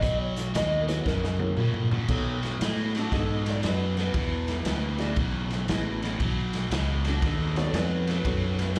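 A dark, slightly broken-up electric slide guitar carries the melody with a slapback echo, taking a solo from 2.1 s to the end of this rollicking, laid-back electric blues shuffle at 117 BPM in B mixolydian, cut from a longer piece. Underneath, a bright, overdriven garage guitar picks a low riff with its own slapback, while a growly fingered bass sits up front. The drum kit sounds saturated and gritty in a pumping small room, with a boomy kick, a medium-tuned snare and a rolled-off top, and it plays a fill at 1.1 s. A reedy, worn electric piano, slightly out of tune and lightly overdriven through built-in speakers with tremolo and slapback echo, comes in at 0.9 s to add accompaniment. The swung groove moves through B9 and E9 chords, and the whole performance comes across like a live gig heard through a venue's PA with club reverb.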